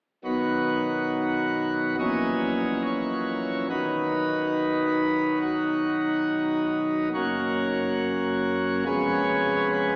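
A full, brilliant pipe organ plenum with bright mixtures, baroque voicing and a touch of chiff sits up front as the sole voice in this reverent, serene classical chorale-style fragment in B major at 70 BPM in 4/4, moving from B through F#7/A# and F# to a close on C#7/E# at 8.9 seconds, all bathed in a long, wet church reverb with a thin AM-radio character.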